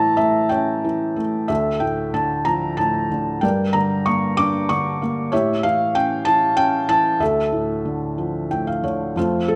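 In a rubato 6/8 at 62 BPM, this peaceful, tender classical fragment in D harmonic minor (tuned to A4 = 438 Hz) is carried by a single felt-muted upright piano, spanning D2 to D6 as it moves from A through Dm, Gm and A7 to a closing Dmadd9. The piano sits up front with a muted, intimate tone and audible action noise, set in a moderate recital hall reverb. A brief fill from 8.2 s leads toward the cut-off, as this passage is clipped from a longer piece.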